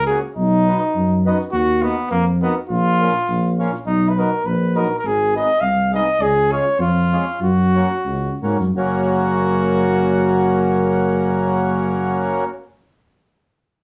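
Alpine folk in F# major, a jolly, bouncy excerpt in a straight 2/4 at 82-104 BPM, where a clear, vintage flugelhorn carries the melody over a mellow tuba bass with light vibrato and a reedy, full accordion accompaniment entering at 0.1 seconds, the tune easing into a slowdown between 6.2 and 8.8 seconds before a brief new section, all set in a light small-room reverb.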